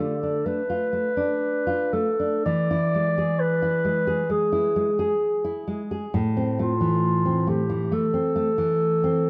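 A dark, distant clarinet sings a solemn, elegiac melody up front over a full-bodied, fingerpicked nylon-string guitar with fresh strings in this slow, rubato romantic duo in A minor at 55-69 BPM and 4/4, tuned to A4 = 442 Hz, moving from Dm to E7 at 2.5 seconds and resolving to Am at 6.1 seconds within a moderate plate reverb, in a fragment cut from a longer piece.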